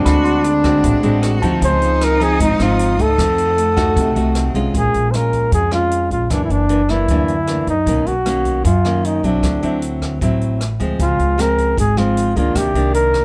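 Dry, close and detailed, this smooth, intimate bossa nova fragment at 154 BPM is led by an up-front flugelhorn soloing in a mellow jazz style. Beneath it sit fingerpicked nylon-string guitar with audible finger squeak, a woody, growly pizzicato upright bass, and an open jazz kit of hi-hat, rim click and boomy kick. For the first 4.7 seconds, a rich, focused bowed cello adds a vibrato second line while a worn, slightly out-of-tune tine electric piano and a lush symphonic string section sit very quietly in the background, before those three drop away as the harmony moves from D7#11 through Bbm7 and Bmaj9 to Cm9.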